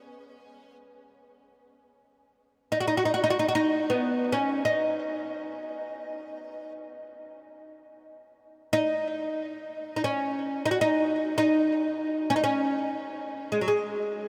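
A solo oud opens this meditative world piece and carries it alone for its full 14.3 seconds, moving in free time with an unhurried, spacious feel. Plucked with a plectrum, the fretless instrument's doubled strings give a bright, woody tone, and it sits up front in the mix. Its line stays within a single octave, from F#3 up to F#4, and it is tuned slightly below standard pitch, with A at 439 Hz. A delay on the oud adds echoes to its notes. The whole performance sits inside a huge, wet ambient reverb with a long 8.8-second tail, deepening the contemplative atmosphere of this passage cut from a longer piece.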